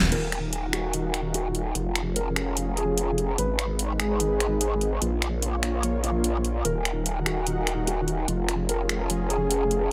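Set in a light reverb, this menacing, aggressive heavy wobble dubstep cut moves with a half-time feel and opens on a full-band accent at 0.0 seconds. An up-front growl bass, saturated and wobbling through chorus and overdrive, sits beneath an overdriven, layered electronic drum kit of crash cymbal, finger snaps and hi-hat. Behind them, a lush, detuned supersaw pad holds sustained chords under a low-pass filter sweep, while a dark, boxy grand piano carries the melody through digital delay over a progression from Ebm through Db/F, Abm and Bbm.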